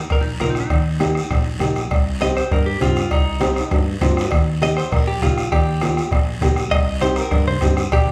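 A clean, picked electric guitar carries a joyful cumbia solo through this short, danceable cut from a longer piece, its compressed tone bathed in spring reverb, while a thumb-plucked nylon-string guitar adds warm classical accompaniment and a dark, round fingered bass keeps the low end punchy. Up front, a soft-beater bombo anchors the groove, with bright, low-tuned congas, ringing cowbell and timbales set back in the mix, and a raspy, saturated guiro. A drum fill arrives at 3.4 seconds as the harmony moves between Eb and Cm, all captured like a band playing live together in one large studio room.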